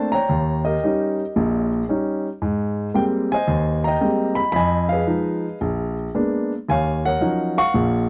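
A dry, close 1970s-style studio sound puts the grand piano up front, intimate and natural, with its action noise audible. This short fragment of solo jazz swings at 113 BPM in 4/4, the lone piano spanning Bb1 to Db6 in a sophisticated, warm mood. Its harmony moves from Eb7 at 0.3 seconds through Abmaj9, Fm7b5 and Bb7b9 before settling on Ebm9 at 6.7 seconds.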